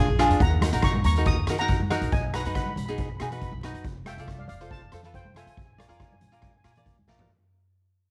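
A shimmering, metallic steel pan, struck with medium rubber sticks and colored by cassette tape, carries the lead melody of this driving, intense calypso excerpt at 139 BPM, over crisp, up-front picked cavaquinho with the same tape tone, a dark, thumpy pizzicato upright bass on woody gut strings, a boomy, polished street-band drum kit in a big, airy room that also carries the tape coloring and lands a fill at 7.1 seconds, and damped, high-tuned congas with a thick skin sitting in the background, the whole clip fading out through Ebm, B, F and Bb under light reverb.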